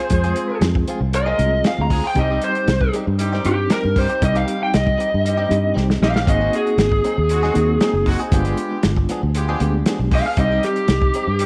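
Smoky and brooding, this straight-eighth soul blues in C minor moves at 117 BPM, with an overdriven, dark lead guitar through a small cranked amp soloing up front across the whole 11.5-second excerpt over a round, foam-muted fingered bass and a muffled, lo-fi soul drum kit with a tight kick and a drum fill at 5.8 seconds. A bright, twangy clean guitar recorded direct plays compressed stabs, a reedy electric piano with fast tremolo comps through its built-in speakers, and a clear, distant horn section holds roomy sustained chords with vibrato. The harmony runs Fm, Cm, Ab7 and G7b9 back to Cm under light reverb.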